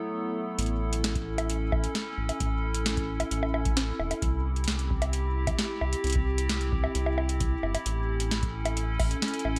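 A lightly reverberant digital ambience frames this playful, wistful IDM fragment at 132 BPM, where a warbling, detuned tape-like pad with chorus and 12-bit sampler grit holds sustained chords alone before a rubbery, nasal square bass and a punchy analog drum machine of bongos, metallic hats and snare with tape echo arrive at 0.6 seconds, joined by a deep electronic kick at 1.2 seconds, as the harmony moves from A to C and back to A.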